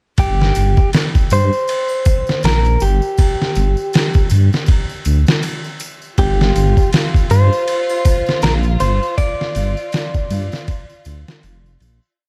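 A slow 80 BPM trip hop groove with a 16th-note swing drives this brooding, smoky short piece, built on a gritty, pitched-down sampler-style drum kit with a thumpy kick and looped, edited breakbeat up front, a deep, rumbling detuned saw bass, a clean picked electric guitar melody roughened by 12-bit sampler grit and dub echo, faint tambourine and triangle in the background, and a clear bowed string section holding a high note from 6.2 seconds, all wrapped in dark ambience and vinyl crackle before a fade-out starting at 8.2 seconds.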